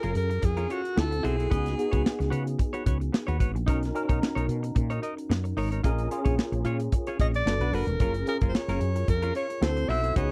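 A dry, close studio sound frames this upbeat, urban slice of polished 1980s jazz-funk pop at 111 BPM with a lightly swung sixteenth feel, where a tight, dark funk kit with a medium-tuned snare sits up front beside a growly, round fretless bass, while a worn, slightly out-of-tune tine electric piano with ensemble chorus and a clean, compressed semi-hollow guitar riff with subtle chorus carry the F#maj7, D9 and Bmaj9 changes, and a breathy, whispered alto saxophone with scooped notes and slapback echo sings the melody from 0.0 to 2.3 seconds before returning at 7.2 seconds.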